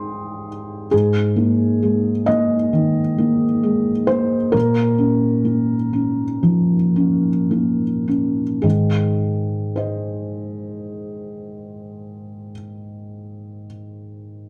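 A dark production with a moderate spring reverb of 1.2 seconds frames a lone felt-muted upright piano, placed up front, whose soft, mellow tone carries audible action noise along with the character of its thick felt. This peaceful, intimate neoclassical minimalist fragment in Ab major moves in a rubato 4/4 at 52-68 BPM, slowing through its first 8.6 seconds as the harmony drifts from Abmaj7 to Absus2 and then Bbm. A new passage begins at 8.6 seconds, settling on Ab, with the piano spanning Ab2 to Eb6 until it stops at 14.5 seconds.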